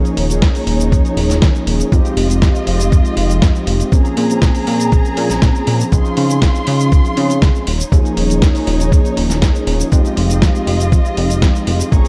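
Nu-disco at 120 BPM in F minor, this groovy, cosmic 12-second excerpt sets a thumpy, gritty electronic kick up front beneath a dusty sampler-style kit of hi-hat, shaker and medium-tuned snare in small room ambience, a glossy chorused pulse-and-sawtooth synth bass with a filter pluck, round detuned synth brass carrying chorus, vibrato, dub echo and sidechain pumping, and lush bowed strings holding sustained chords that also pump, all moving through Eb7sus4, Fm7, Bbm7 and Dbmaj7 in a dark production with light digital reverb.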